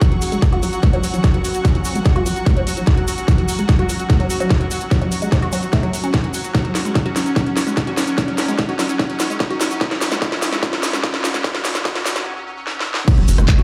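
A straight 4/4 psychedelic trance pulse at 147 BPM drives this hypnotic build-up, with a punchy, up-front electronic kick and a layered kit of cracking snare, metallic hats, handclaps, rim clicks and crash running drum fills nearly throughout, while a grainy cabasa sits in the background. Over an F#5 chord, a woody, wave-folded pluck riff with tape echo and a bright, detuned gated texture both pump against the kick under a steady filter sweep. Soft, bowed chamber strings add an intimate hush, and a very quiet formant wobble bass surfaces briefly at 1.3 and 7.9 seconds. After a short break at 12.3 seconds an impact lands at 13.1 seconds, and a tight, driving sequencer bass follows at 13.2 seconds, all heard through a large studio reverb.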